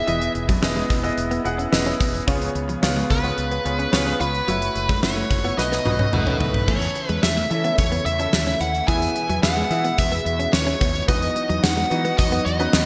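1980s-style pop with a glossy, uplifting mood, this brief excerpt from a longer piece moves in a straight 4/4 over a bright, digital-era production bathed in a lush hall reverb. A smooth, dark overdriven lead guitar carries the melody up front, while a clear, polished baby grand piano with subtle chorus supplies the accompaniment. Tucked in the background, a clean, direct-recorded electric guitar plays a compressed, picked riff through analog chorus and digital delay. A round, mellow fretless bass anchors the low end beneath a punchy gated drum kit with a fat snare, bright cymbals and toms, which rolls through a fill from 5.6 to 6.7 seconds. At 6.7 seconds the second section arrives, where a silky, warbling string machine adds slow-attack sustained chords and a grainy tube shaker joins very quietly.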